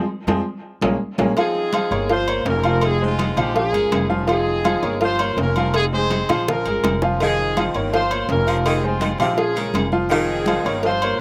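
Salsa in F minor at 165 BPM, this fiery, driving excerpt opens with a clear, worn grand piano solo over a drum fill and band accent, supported from the start by woody, thumpy pizzicato upright bass and joined by bright hard-hand congas, tight high-tuned cowbell and bongos, and ringing metal-shell timbales and agogo bells with slapback echo, before a punchy horn section takes the melody up front at 1.4 seconds and a close-miked saxophone section with vibrato adds a second line from 7.2 seconds, all under light reverb in an outdoor setting.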